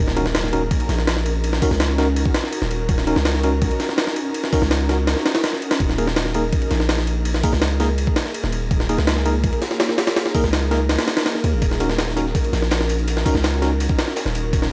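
Drum and bass with a jungle edge at 165 BPM in Eb minor, this raw, frenetic excerpt drops in at 0.0 seconds on a very quiet electronic impact, with a deep, up-front sine 808-style bass holding long notes under a compressed, pitched-up sampler breakbeat kit with a thumpy kick and high-tuned snare, clean tine electric piano stabs through a combo amp trailing dub echo over Ebm7 and Absus2/Eb, and a dark, saturated second breakbeat kit with a rolled-off top slipping in very quietly at 11.6 seconds, all set in a dry, gritty hardware sound dusted with vinyl crackle.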